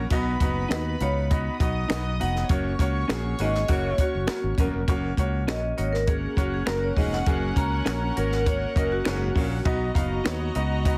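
This excerpt of 1960s-style soul opens with strings, piano, bass and a breathy baritone saxophone riff sounding together, the drums joining almost at once, and the mood is uplifting and joyful. A fretless electric bass sits up front with a direct tone, while a compact cocktail kit keeps a dry, natural beat on punchy kick, high-tuned snare and hi-hat, joined by close finger snaps. The concert grand piano gives clear, polished accompaniment with short sustain, a gut-string studio string section adds a reedy, bowed second line, and a very quiet, slightly broken-up electric guitar plays picked stabs through a small old amp. A vibraphone with medium hard mallets carries the melody from 1.0 seconds, metallic and ringing with slow motor vibrato, and after a band accent it takes a solo from 4.9 seconds. A clear, jazz-style saxophone section adds a short second line at 3.4 seconds, and the strings, piano, vibraphone and sax section share a plate reverb within a heavily compressed, radio-like mix.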